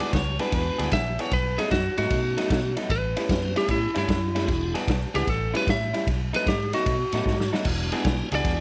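A brief burst of gritty, overdriven harmonica with tongue slaps and scooped notes opens this excerpt of a swaggering electric blues shuffle, alongside a vintage drum kit, a riffing electric guitar through a small old amp, and a tonewheel organ. The shuffle moves at 152 BPM in 4/4 with a strong swing, in E mixolydian over a dominant-seventh progression on E7, A7 and B7. The drums sit up front with a muffled, small-room sound and dark cymbals, while the fingered guitar riff is slightly broken-up and lo-fi, bathed in spring reverb. The organ stays in the background, piping with key click, light overdrive, chorus vibrato and a slow rotary speaker. A foam-muted, round electric bass joins almost at once, and at 0.9 seconds a lightly driven, picked lead guitar takes the melody up front as the harmonica drops out. A drum fill at 7.3 seconds rounds off the passage, and the overall sound is dry.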